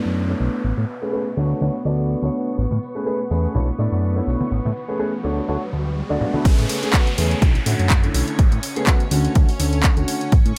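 A swung sixteenth-note groove in 4/4 drives this feel-good, funky filtered disco house excerpt, which opens with a boxy grand piano through phaser, a lush, vintage string machine with ensemble chorus and a fat, sawtooth analog bass, each pumping beneath a low-pass filter sweep, along with electronic downlifter and riser effects. At 2.6 seconds, hard-hand tambourine and congas join as a riser builds, and at 6.5 seconds the drop lands with a punchy, overdriven electronic kick up front and a house kit of handclaps, bright hi-hats and ride cymbal. The chords cycle through Bm11, Amaj9 and Dmaj7 in a light reverb.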